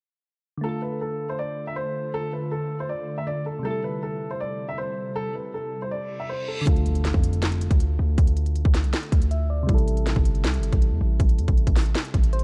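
A melancholic, eerie trap excerpt at 159 BPM in half-time opens with a dark, up-front baby grand piano melody carrying a digital delay over soft, round electric-piano-like synth keys with chorus, moving between Dm and Am7 as an ethereal, airy pad with ensemble chorus and built-in reverb enters at 1.7 s. A reverse cymbal at 6.1 s leads into an electronic impact, and at 6.7 s a trap kit of hard-clipped kick, sharp snare, handclaps and crisp hi-hats arrives with a hard-hitting, punchy, heavy 808-style bass, while a filter sweep shapes the synth keys, which add brief fills. The mix is dry and warm, with the drums and bass placed prominently.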